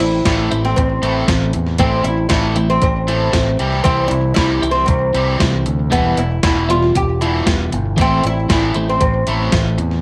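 A woody, plectrum-plucked oud carries the melody up front with slapback echo in this carefree, jangly indie rock clip at 116 BPM, over a crunchy overdriven guitar riff touched with subtle chorus and slapback, a bright, compressed twelve-string electric guitar riff in the background, a growling overdriven fingered bass, and a thumpy gated 80s digital drum machine with a gated-reverb snare, while the harmony moves from Am to C, Em and back to Am.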